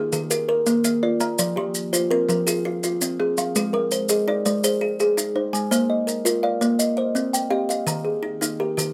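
A straight 12/8 pulse at 111 BPM drives this rippling, hypnotic excerpt of southern African traditional music, built on an mbira-style interlocking cycle in Bb mixolydian that moves through Bb, Fm, Ab, then Bb, Cm and Eb. Two kalimbas play arpeggios throughout: one up front with a soft, woody fingertip pluck from a solid board, the other quieter and brighter, its short thumbnail pluck sounding from a hollow box. Grainy, compressed maracas sit close alongside from 0.1 seconds, and light reverb surrounds the parts.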